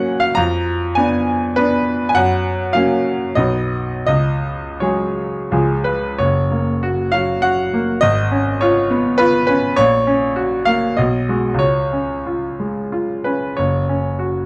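Lyrical and warm, this romantic classical character piece for solo baby grand piano, cut from a longer work, unfolds in F# major and 3/4 time at a rubato 79-104 BPM, tuned to A4 = 439 Hz, its bright, brilliant, up-front tone with short sustain spanning F#1 to A#5 within a moderate large-studio reverb and a dark production, moving from its opening theme into a contrasting passage at 6.2 s and settling on an F#5 chord at 13.6 s.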